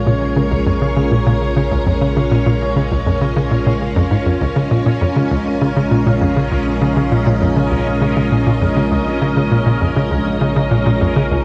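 Bathed in a moderate plate reverb, this cosmic, mysterious ambient piece in Bb minor moves at 100 BPM in straight 4/4 over a single held Bbm7 chord, cut from a longer work. A lush, up-front string machine ensemble sustains slow-blooming sawtooth chords with a sub octave and ensemble chorus, while a nasal, evolving analog drone holds a low Bb beneath, and a resonant, bubbling stepped-filter texture shimmers with its own built-in reverb. Loudest of the four, a hollow, bouncy square-wave pluck enters at 0.1 s with a detuned riff, roughened by vintage 12-bit sampler grit and trailed by analog delay.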